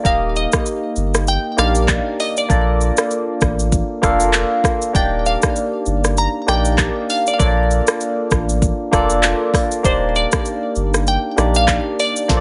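An afrobeats groove at 98 BPM in 4/4, with a gentle swing on the sixteenths, drives this short, sunny and romantic cut from a longer piece. The up-front electronic drum kit sets the pulse with a deep kick, sharp snare, rim clicks, handclaps, hi-hat and shaker, while a round sine sub bass sits underneath with a mellow, sustained low end. A bright, barky tine electric piano, played through a combo amp and colored by phaser, carries the accompaniment up front over a slow alternation of Ebmaj7 and Bbmaj7 chords. From 0.1 seconds a glassy wavetable pluck takes the melody, its crystalline, digital tone built from unison layers, a noise layer and ring modulation, with a filter sweep, chorus and delay giving it shimmer. The mix is dry, with little reverb and a soft, rounded top end.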